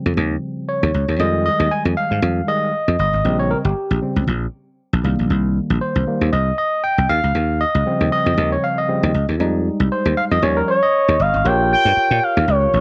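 A 117 BPM 4/4 groove with a light 16th-note swing drives this danceable, late-night early-eighties boogie funk fragment in Bb dorian, where a barky, clean tine electric piano carries the featured accompaniment from the start over a punchy, growly, foam-muted thumbed slap bass, and at 10.7 seconds a smooth, dark, expressive sawtooth synth lead with chorus and vibrato steps up front, all within a lightly reverberant room.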